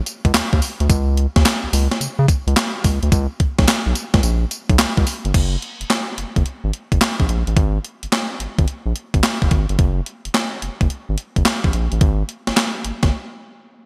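A crisp, sampler-style drum machine drives this flirty, upbeat new jack swing cut, kicking in at 0.1 seconds up front with a thumpy kick, a medium-tuned snare, hi-hat, handclaps, tambourine and crash cymbal. The kit carries gated reverb and the character of a small room, and its sixteenths swing at 67% in 4/4. Underneath sits an up-front analog synth bass, round, deep and dark, built from blended square, sine, triangle, sawtooth and wave-folded tones with a fast attack and sustained notes reaching down to F#1. The groove moves from its opening section into a second one at 5.3 seconds, then drops into a short break at 13.1 seconds before the clip, taken from a longer piece, cuts off. The whole mix has a bright, 1980s-style digital production sheen with light reverb.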